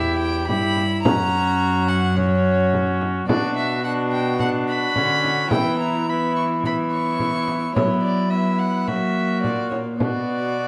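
A classical, Renaissance-style consort dance in B harmonic minor, cut from a longer piece, moves at a straight 107 BPM in 4/4 with a rustic, solemn mood, its harmony passing from Em and F# to Bm before an F#7sus4 and F#7 resolve home to Bm at 10.0 seconds. A single bowed violin carries the melody up front with an airy, nasal gut-string tone, while the cor anglais sings a second line with light vibrato, one viola fills the accompaniment with a smooth-topped period sound, and a rich, reedy cello anchors the bass up front. A small, bright frame drum played with soft hands joins at 0.5 seconds, and a damp stone-room reverb lends the consort a resonant, chapel-like space.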